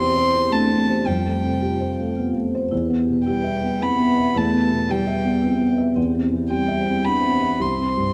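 A dark, intimate studio sound with moderate large-room reverb frames this tender neoclassical piece for piano and strings in C major, moving at 110 BPM in a rubato 3/4. A felt-muted upright piano sits up front, soft and mellow with audible action noise, carrying the accompaniment while a single bowed violin floats a pure, smooth melody up high, played sul tasto with tape echo. A distant, rich cello adds a second line, and a vibraphone with medium mallets rings in the background with metallic arpeggios, medium motor vibrato and tape echo, over chords that move from C/E through Fadd9 and Em before settling on C5.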